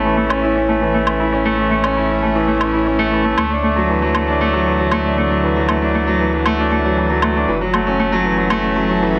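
Melancholic and intimate, this piano and strings electronica moves at 117 BPM in a straight 4/4, cut from a longer piece and tuned slightly below standard pitch. A bright concert grand piano sits up front with a brilliant, open tone and long sustain, playing a riff between E3 and E4 through a low-pass filter and delay. Behind it, a dark studio string section holds sustained bowed chords with vibrato and a woody, smooth top, fading in across the whole 9.2 seconds from the background. A round sine sub bass adds deep, mellow weight with a fast attack, while an overdriven, layered electronic woodblock plays in the background from 0.3 to 8.6 seconds. The harmony moves from A to Dadd9 at 3.4 seconds and F#m7 at 7.5 seconds, all set in a lush hall reverb with a touch of small room ambience.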